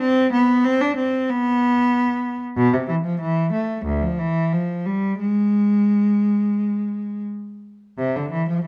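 A lone bowed cello, rich and focused with a smooth top and vibrato, sits up front from 0.0 to 8.7 seconds in this introspective, flowing fragment of a baroque-style classical suite movement, moving with rubato around 84-95 BPM in 4/4 across a range from D2 to D4, tuned to A4 = 438 Hz, with a dark production and a moderate stone-room reverb.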